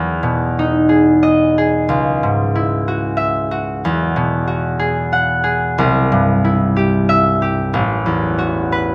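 A stone room's reverb surrounds a bright, ringing concert harp placed up front, its fingerpicked notes reaching from A1 to F#5 in this short cut from a longer classical solo piece. The mood is peaceful and dreamy, moving in a rubato 6/8 at about 61 BPM in E major. The harmony drifts from Emaj7 through C#madd9 and Eadd9 to a C chord at 5.8 seconds, settling on Asus2 near the close.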